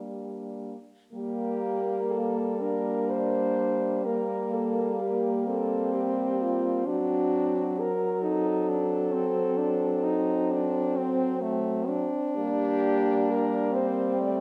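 A mellow, distant French horn carries the melody in this elegiac, melancholic classical excerpt for horn quartet in G minor, moving at a rubato 43 BPM in 12/8, while a warm second horn with light vibrato sits up front on an inner line, a third horn plays accompaniment in the background, and a soft-attacked bass horn anchors the harmony as it turns from Gm to D7/F# at 6.9 s and back to Gm at 12.4 s, framed by moderate scoring-stage reverb and a dark production.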